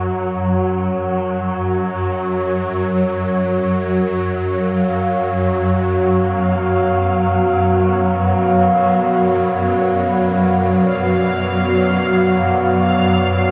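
Desolate and unsettling, this dark ambient drone drifts in free time, cut from a longer piece and tuned to A4 = 439 Hz. A swarming, tense drone sits up front from the start, its detuned, wave-folded tone grainy and slowly evolving in the low register while its built-in reverb blurs the edges. Alongside it, a deep, moody pad holds sustained chords, resting on F# before moving to Bmadd9/F# at 4.4 seconds, its mellow sawtooth body thickened by a sub octave, chorus and a shimmer reverb. At 4.8 seconds a bubbling stepped-filter texture enters on a single high E#5, its resonant, bright sawtooth tone flickering through random filter steps beneath chorus and shimmer. The whole mix sits in a wet spring reverb with a lingering tail and carries the soft haze of cassette tape.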